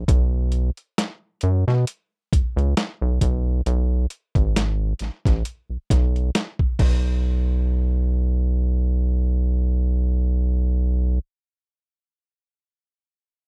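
A slow 67 BPM groove in 4/4 with a lightly swung sixteenth feel opens this introspective, soulful R&B and neo-soul fragment. A gritty, compressed, pitched-down boom bap drum kit with a thumpy kick, a high-tuned snare, hi-hat and crash sits up front until 7.0 s, alongside a rubbery, hollow square-wave bass with a nasal filter pluck that carries on alone through a second section beginning at 7.2 s. The sound is dry and close, like a 1970s studio recording.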